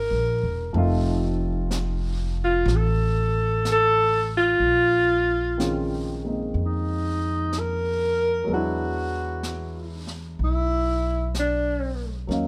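Smoky and melancholic, this swung jazz ballad fragment opens with a breathy, subtoned alto saxophone taking an up-front solo for the first 4.6 seconds, its mellow tone touched by light vibrato. A dark concert grand piano with short sustain and a woody, growly pizzicato upright bass on steel strings support it through chords such as Db69 and Bbm11. A brushed jazz kit with a high-tuned snare and hi-hat slips in quietly at 0.7 seconds, all set in a light reverb.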